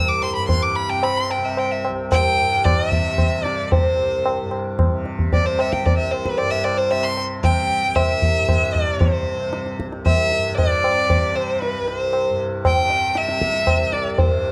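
A rich, expressive bowed violin sings up front with vibrato, soft attacks and gliding portamento over a buzzing, shimmering tanpura drone and high-tuned, close and dry tabla with a short ring, in this meditative yet radiant Hindustani classical fragment in 5/4 that gradually speeds up, set in a dark production with a moderate recital hall reverb and cut from a longer piece.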